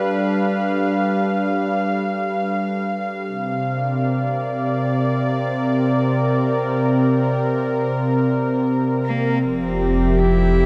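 Floating in free time and tuned to A4 = 437 Hz, this melancholic yet serene ambient fragment opens with a detuned sawtooth pad, mellow and chorused, holding sustained chords that move from G7 to C7sus4 beneath a huge, wet reverb. At 9.1 seconds a single bowed cello enters with a short melody, earthy and biting beneath a smooth top and trailed by a diffuse ambient delay. At 9.4 seconds a round, deep sine sub bass arrives on a low F with tube saturation as the harmony settles onto Fmaj7.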